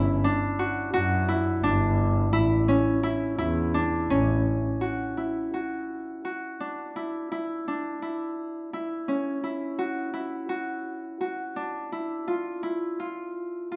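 A moderate recital-hall reverb surrounds this hopeful, shimmering piece of contemporary chamber music in 7/8 at 169 BPM, counted in eighths, cut from a longer work. A bright, ringing Celtic harp sits up front, fingerpicking arpeggios throughout, while a dark bowed double bass with vibrato, portamento and a soft attack plays alongside it expressively until 4.7 seconds. After that the harp carries on by itself as the harmony moves from Dadd9 to Dmadd9 at 12.3 seconds.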